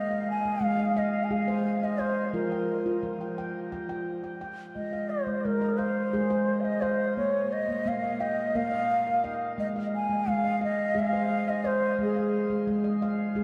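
A bansuri and a handpan open together on this calm, dreamy world meditation piece in Ab major, moving in 7/8 at 174 BPM counted in eighths with a straight feel. The bansuri carries the melody between Ab4 and Ab5, its airy bamboo tone close-miked and up front, with a soft attack, gentle vibrato, and a trail of shimmer reverb and dub echo. Alongside it, the handpan plays arpeggios from F3 to G5, its stainless-steel notes ringing and mellow under soft fingertips, heard up front with a boxy small-room character and its own shimmer reverb. The harmony moves from Ab through Fsus24 and back to Ab before touching Bb5 and settling on Ab again, and a wet echo chamber with a 2.4-second decay gives the mix a heavy, echoing haze. The bansuri falls away at 12.7 seconds, leaving the handpan to ring on alone until this section, cut from a longer piece, ends at 13.4 seconds.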